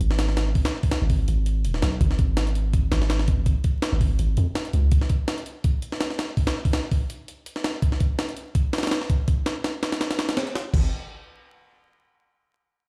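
A long, sustained 808-style bass stands out, deep and sine-pure with a fast attack that then decays, sitting up front from 0.0 to 4.9 seconds and returning briefly at 10.7 seconds. This is a nostalgic, atmospheric slice of drum and bass and jungle, cut from a longer piece, moving at 165 BPM in 4/4 with a light swing on the sixteenths, in G# dorian. A sampler-style breakbeat kit drives it until 10.8 seconds, compressed, pitched up and gritty, with a thumpy kick, a high-tuned snare, hi-hat and crash cymbal pushed forward in the mix. The sound feels as if played on a big sound system in a bare room, bathed in large studio reverb with a layer of vinyl crackle. After the main stretch, a short closing section begins at 10.7 seconds and carries the last brief return of the bass.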